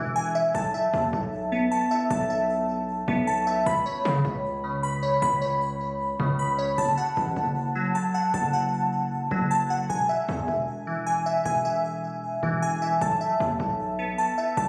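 Glassy, detuned digital keys open this dreamy yet triumphant trap cut at 0.0 seconds, spinning arpeggios alongside a distorted 808-style bass. The track runs at 154 BPM in 4/4 with a half-time feel, in E major. The keys sit bright and up front, blending sine and triangle tones with a sub octave and a filter sweep, each note striking fast and decaying under chorus and digital delay. Beneath them the heavy, aggressive bass carries a noise layer over its sine core, hitting with a fast attack before fading, and sits lower in level than the keys. The harmony moves from E through B7sus4, Bsus2/C# and F#m, then returns to E at 9.9 seconds for a new section that turns again toward B7sus4. Captured on a phone in a room and finished with light studio reverb and compression, this fragment of a longer piece ends at 14.7 seconds.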